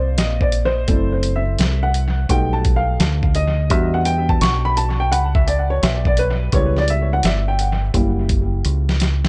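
An echo-heavy, lo-fi mix with light reverb and a rolled-off top end frames this mellow, cool jazz-hop excerpt at 85 BPM with a swung 16th feel, where a dark, woody upright piano with audible action noise and analog delay solos over jazzy changes from F#m7b5 through B7alt to Em7, a round, deep dub fingered electric bass sits up front, and a compressed, muffled sampler-style drum kit with thumpy kick, fat snare, hi-hat and its own analog delay enters at 0.2 seconds before closing on a drum fill at 8.7 seconds.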